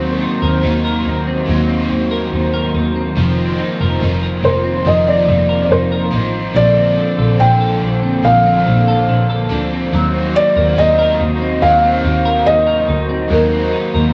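Blissful and floating, this slow dream pop passage at 71 BPM sets a muted, felt-dampened upright piano melody up front over a bowed double bass with gentle vibrato, a detuned, flute-like pad holding sustained chords, clean hollow-body electric guitar arpeggios with analog chorus and delay, and a crunchy, double-tracked overdriven guitar shimmering with tremolo and lush chorus, all moving through Ebm6, F7sus4 and Bbmaj9 in a small room drenched in wet spring reverb with the character of a home cassette recording.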